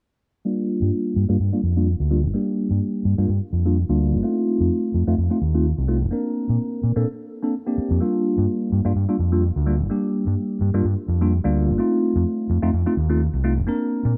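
A dark production with moderate plate reverb frames this groovy, nostalgic house cut in G minor at 127 BPM with a light 16th-note swing, where a bell-like, clean tine electric piano with phaser and low-pass filtering plays chords from Gm7 through F7 and Bbadd9 over an overdriven, round fingered electric bass with tube saturation, both parts up front, while a filter sweep runs from 0.5 to 14.2 seconds across this short section of a longer piece.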